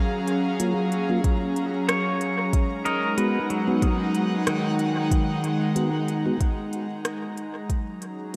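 An airy, breathy pad with chorus holds sustained chords from F#maj7 to G#m7 in this spacious, meditative ambient dub excerpt at 93 BPM in G# dorian, joined by a background tonewheel organ's flute-like stabs through a fast rotary speaker and dub echo, a soft overdriven electronic kick, a crisp overdriven kit of hi-hat and rim click with dub echo, and a clean pedal steel guitar whose arpeggios, roughened by vintage 12-bit sampler grit and analog delay, play from 1.9 to 6.3 seconds, all set in a lush hall reverb and fading out from 6.0 seconds.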